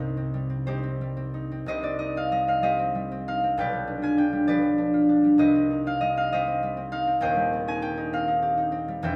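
Classical solo harp in C minor, gentle and mysterious, unfolds in a slow, rubato 6/8 at 58-68 BPM, its ringing, fingerpicked concert harp sitting up front and spanning Eb1 to Ab5 as it moves from Cm through G7/B back to Cm and on to Cm/Eb, all bathed in the wet reverb of a recital hall across this 9.2-second fragment cut from a longer piece.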